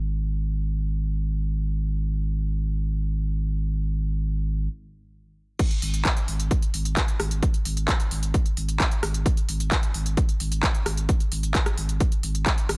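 Driving peak-time techno at 131 BPM in a straight 4/4, relentless and industrial in mood. The cut opens on a deep, thick sine sub bass around G#1, tube-saturated and low-pass filtered with a sidechain pump, sustaining up front until a brief stop at 4.7 s. The drop lands at 5.6 s with a heavy, overdriven electronic kick and a layered techno kit of crash cymbal, handclaps, smooth hi-hats and rim clicks, all dry and close in the mix.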